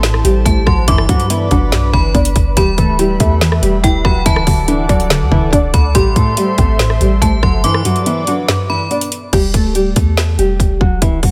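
Trap-flavored hip hop in E minor at 142 BPM with a half-time feel, this menacing, dark excerpt sets a fingerpicked nylon-string guitar melody with audible finger squeak over a hollow, bouncy square-wave pluck, a breathy pad, a ringing, inharmonic FM bell line from 0.5 to 8.9 seconds, a boomy sine 808 bass and an up-front trap kit with a hard-clipped kick and woody snare. It moves through Am, G, Em and D with a break at 7.6 seconds before the pluck and pad drop out at 9.3 seconds, leaving guitar, bass and drums in a dry sound with little reverb.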